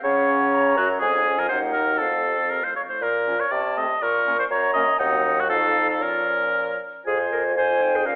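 The oboe leads the ear, sitting up front with a warm, singing vibrato as the second line in this quick, stormy classical-period movement for wind quintet, taken from a longer piece. Above it the silver flute carries the melody with an airy, metallic tone and soft attack, while the bassoon, also up front, anchors the bass with a light vibrato. The clear, vintage-tinged clarinet and the mellow French horn, the latter set further back, fill in the accompaniment. In Bb minor at 120 BPM in 2/4, the playing has an urgent feel with rubato, moving through chords such as Ebm, F7 and Bbm before shifting to Fm as a new section begins at 7.1 seconds. The sound is filtered like a telephone and bathed in wet recital-hall reverb.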